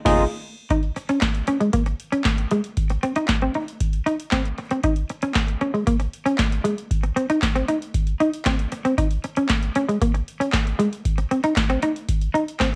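A chorus-drenched, clean semi-hollow electric guitar riff sits up front over a booming analog drum machine with a deep kick, crisp snare, metallic hats, handclaps and crash, opening on a band accent before settling into a slick, late-night early-eighties boogie funk groove at 116 BPM, all carrying the light reverb and soft grain of a home cassette recording.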